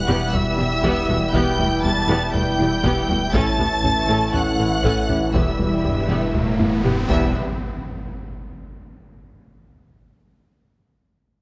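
Brooding and vast, this cinematic hybrid film-score fragment sets warm bowed violin sections carrying a high melody and a second line over a rich viola accompaniment in the background, a very quiet cello section, a dark, woody double bass section, and a tight French horn section and bright trombone section holding sustained chords. Electronic colour comes from a menacing detuned saw bass with a filter swell, a silky, very quiet analog string pad with tremolo, and a round, tine-like, thumb-piano-like synth pluck playing arpeggios, while close, dry taiko drums with heavy sticks sit in the background, all within a moderate concert hall reverb. A riser builds from 5.5 seconds and a drum fill follows, and at 7.3 seconds the harmony drops away into an electronic impact.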